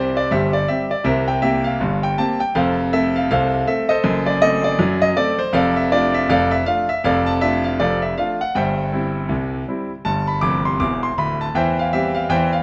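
Playful and jaunty, this short ragtime piano passage struts along at 80 BPM in 2/4, with a 16th-note swing of 59% giving it a loping bounce. A clear concert grand carries the whole piece alone, sitting up front with a smooth, vintage character and a deep bass that reaches down to D1, while its range extends as high as D6. The harmony moves from C through F, F#dim and Dm/F before settling on C/G and G5, then lands on C/E at 11.6 seconds. A brief piano fill arrives between 10.4 and 11.6 seconds. Close, detailed microphones capture the instrument inside a moderate concert hall reverb of 2.0 seconds, and the clip is cut from a longer performance.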